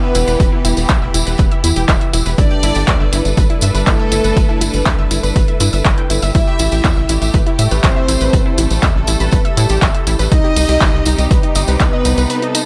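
Dark and hypnotic, this melodic techno excerpt moves over Em7, Gadd9, Am7 and Cm. A punchy, overdriven electronic kick sits up front with a tight, driving sawtooth sequencer bass, alongside an overdriven deep house kit of handclaps and hi-hats, a jingly tambourine and a very quiet, gritty breakbeat kit with a small-room sound. Lush detuned unison plucks play arpeggios, a smooth, mellow synth lead with subtle chorus carries the melody in the background, a chamber violin section bowed with vibrato adds a second line, and a biting symphonic string section holds chords, with sidechain pumping on the bass, plucks, lead, strings and the house kit's hats, tape echo on the lead, violins and plucks, light reverb overall, and a brief break at 12.3 s.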